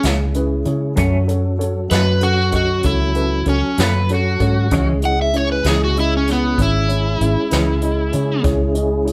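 A lightly reverberant, live-in-one-room sound frames this brooding, smoky slow blues excerpt in C# minor at 64 BPM in 12/8, where a dark, overdriven slide guitar carries the melody up front over a punchy, foam-muted fingered electric bass, a boxy, woody upright piano with audible action noise, a clean, compressed semi-hollow guitar with tremolo, a flute-like tonewheel organ with slow rotary speaker and chorus vibrato in the background, and a brushed drum kit with a boomy kick, while a brighter second slide line joins briefly from 3.8 to 4.9 seconds.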